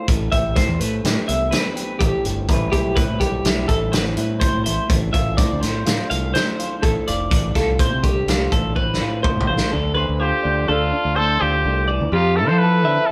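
Math rock and midwest emo in 5/4 with an intricate, wistful mood: a twelve-string electric guitar picks compressed arpeggios with tremolo over a slightly broken-up, lo-fi electric guitar through a small old amp and a growling, overdriven fingered bass, while a saturated, gritty indie drum kit with a punchy kick sits up front until its fill ends at 9.7 seconds, and a clear trumpet with light vibrato, scooped notes and slapback echo takes the melody from 10.2 seconds, the band playing live in one room with light reverb.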